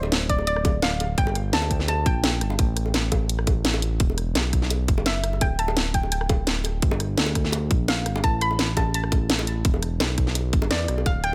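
A digital ambience and small-room sheen surround this dreamy, soulful liquid drum and bass excerpt, where an up-front, tape-warm electronic kick and a garage drum kit's hi-hat, rim click and cracking snare drive a straight 4/4 groove, with tight, high-tuned acoustic bongos beneath. A smooth, mellow synth bass holds the low end throughout, with sustained notes and vibrato. Above it, a soft, round pluck with chorus, cassette-tape color and digital delay carries the melody over chords such as Dm7, Gm7 and Asus2, falling silent at 2.7 seconds and returning at 5.1 seconds.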